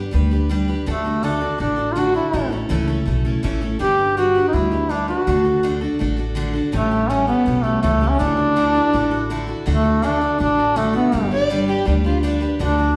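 Easygoing and sunny, this short cut from a longer honky-tonk and classic country piece moves in a straight, steady 4/4. A bright, full-bodied jumbo acoustic guitar with fresh strings picks the accompaniment from the very start, with a touch of finger squeak. An upright bass on gut strings joins almost at once, plucked with a woody, thumpy tone. From 0.9 seconds a clear duduk carries the folk-style melody up front, its soft attack and light vibrato sitting present above the band. Near the close, at 11.3 seconds, a single dark, bowed fiddle adds a brief second line close to the ear, sliding between notes with light vibrato. The whole performance rings in a wet recital hall, giving it the spacious air of a church or concert hall.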